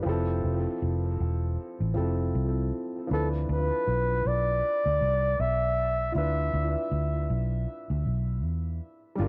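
A grand piano opens this lovers rock reggae excerpt, its natural, intimate tone carrying audible action noise and softened by cassette tape and analog delay, while a dark, foam-muted electric bass joins almost at once, round and punchy up front with tube saturation under the swung groove. From 3.1 to 6.9 seconds a breathy flugelhorn carries the melody as a solo, mellow and whispered with light vibrato, a soft attack and tape echo. The mood is longing and smooth, set in a lightly reverberant home recording with a cassette character.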